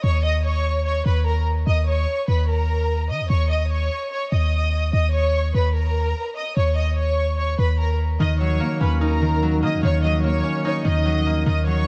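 Hip hop at 147 BPM in 4/4 with a half-time feel, this brooding, menacing excerpt sits in Eb minor and is cut from a longer piece. A lush, bowed violin section carries the melody from the start, its smooth, even tone close and up front, with vibrato and a low-pass filter softening its top. Beneath it, a clean 808-style bass booms deep and dark, its sine tone striking with a fast attack and then decaying. At 8.2 seconds a fingerpicked concert harp enters on an Ebm7 chord, its bright, ringing acoustic tone also shaded by a low-pass filter. Light reverb and a small room ambience frame the parts.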